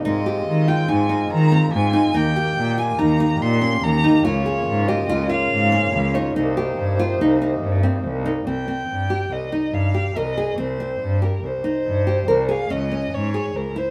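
Hypnotic and restless, this contemporary chamber piece moves at 142 BPM in an uneven 5/4 metre with a straight feel, set in C phrygian and tuned slightly low to A4 = 438 Hz. A dark, woody bowed violin carries the melody up front, played sul tasto by one player with vibrato and a smooth top, while a nylon-string guitar fingerpicks classical arpeggios with an acoustic, warm tone. Beneath them a single bowed cello holds the bass line, also up front, sounding smooth and even with a light vibrato. A reedy hand-pumped harmonium with a breathing quality and a boxy small-room character sustains chords through the opening until it stops at 8.5 s, where the music shifts into a new section. The harmony moves from Ab6 through Eb, Db6 and Cm7 before settling on Cm and closing on Dbmadd9, all within a moderate studio reverb, in this excerpt cut from a longer piece.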